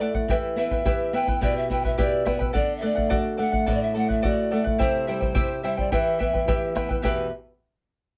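An airy, distant pan flute with soft chiff and vibrato carries a wistful yet festive melody over a bright, shimmering fingerpicked charango and an up-front flamenco guitar with audible finger squeak, joined at 0.1 s by a deep, dry bombo in this brief Andean folk excerpt at 107 BPM in E minor, moving through Em, D and C under light reverb and the worn, warbling pitch drift of old cassette tape.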